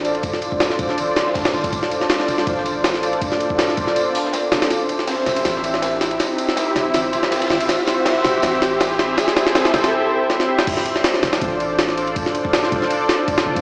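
A lush, detuned sawtooth pad with chorus and a grain of old 12-bit sampler grit opens this raw, nostalgic drum and bass and jungle excerpt in D minor at 161 BPM, sustaining Dm7 and C/D chords over a deep, mellow 808-style sine bass. Up front, a compressed, pitched-up jungle kit hits with a thumpy kick and high-tuned snare, while a dark, saturated breakbeat kit with hats, snare and tambourine sits in the background alongside an electronic riser, as fills from 4.7 seconds build toward the drop at 10.7 seconds. The mix sounds like a big system in a bare room, soaked in hall reverb with vinyl crackle and a small-speaker tone.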